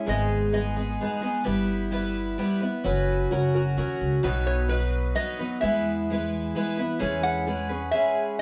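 In a straight three-beat feel, this hopeful, nostalgic acoustic folk excerpt has a shimmering, octave-doubled picked twelve-string guitar up front carrying the full-bodied accompaniment throughout. A woody, thumpy pizzicato upright bass on gut strings sits beneath it, while a metallic, nasal resonator slide guitar played with fingerpicks sounds a brief phrase at the start and returns at 4.5 seconds to carry the melody to the close, all in a moderate studio reverb that feels like a band playing live in one room.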